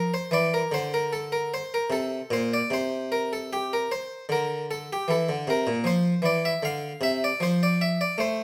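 Heard through close, detailed microphones in a moderately reverberant stone room, this serene, dance-like fragment of a longer baroque-style suite movement features a solo Flemish-style harpsichord with one set of strings, airy and round in tone and set up front, playing in F major at 76 BPM in 4/4 with a rubato feel and spanning Bb2 to F5, opening unaccompanied by chords before reaching C7 at 2.7 s and settling on F at 5.9 s.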